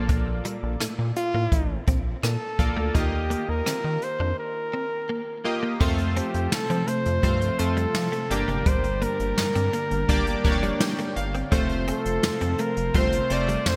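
A straight 4/4 groove from an up-front brushed kit with a boomy kick and gated reverb carries this romantic, glossy 1980s-style pop excerpt, with a rubbery square bass bouncing beneath chorused retro synth keys and a clean, direct-recorded electric guitar riff tucked in the background. A warm, close-miked flugelhorn enters with the vibrato-laden melody at 1.2 seconds. After a brief break, a soft, silky string machine joins at 5.8 seconds with warbling sustained chords, and the synth keys add a fill at 10.4 seconds, all set in a bright digital production with a plate reverb.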